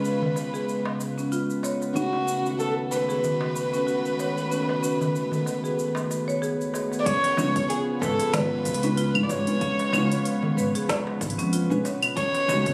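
Hypnotic and mystical, this organic downtempo excerpt moves at 94 BPM in 4/4 with a gentle sixteenth-note swing, as an up-front, airy-bowed kamancheh carries the melody with light vibrato and portamento over a soft, felt-muted upright piano with audible action noise, a chorused sawtooth pad, and dark, smooth marimba arpeggios, while piano and marimba both undergo a filter sweep until 7.1 seconds. An overdriven organic electronic kit with woody snare, smooth hats, cabasa and claves sets the groove alongside a crisp, metal-shelled darbuka in the background, and at 7.1 seconds a deep, overdriven electronic kick arrives, followed by a woody pizzicato upright bass with tube saturation. Harmony circles C#7 and B7 over C#, and the whole sits in light reverb, recorded on a phone in the room with added studio reverb.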